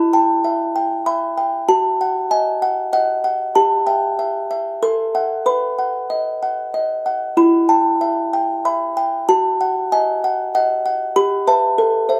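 Closely miked in a snug, boxy room with moderate reverb, this short classical lullaby in 3/4 features a lone, up-front music box whose delicate, tinkling, slightly out-of-tune notes from a large box circle through minor and diminished harmonies for an eerie, wistful 12.2 seconds.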